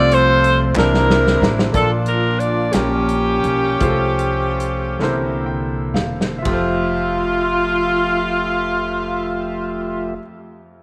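Bathed in a moderate echo-chamber reverb, this slow, uplifting and reverent gospel passage in 6/8, cut from a longer piece, puts a bright saxophone section with vibrato up front over a clear, intimate baby grand piano with audible action noise, a mellow, flute-like tonewheel organ through a fast rotary speaker, woody pizzicato upright bass and a natural country drum kit with a punchy kick that plays fills before dropping out at 6.7 s, while a crisp group handclap sounds briefly at 0.8 s and the music slows before a piano fill leads into the closing chord.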